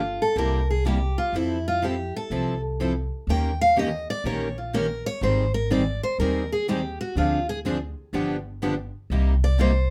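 Fiery and virtuosic, this swinging acoustic string jazz in C minor moves at 124 BPM, with a bright, up-front picked steel-string guitar taking the solo melody across the whole 9.9-second excerpt, finger squeaks audible along the way. Two more picked steel-string guitars enter at 0.4 seconds as accompaniment: one sits up front with fresh strings, while a full-bodied jumbo guitar stays in the background. A woody, thumpy pizzicato upright bass on gut strings anchors the changes from C7 through Fmaj7, Eb7, Abmaj7 and Dm7b5 to G7, landing on Cm7, all in a small room's moderate reverb.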